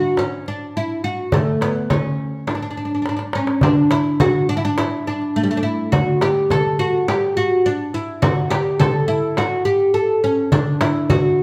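A stately, passionate Turkish makam ensemble piece, cut from a longer work, in which a woody, deep, plectrum-plucked fretless oud with double strings carries the melody up front from 0.0 seconds, joined at 0.2 seconds by a clay-shelled darbuka with natural skin and a small, bright frame drum played with soft hands in the background, with a drum fill at 3.0 seconds leading into a new section, the band playing live together in one room under a moderate large-studio reverb.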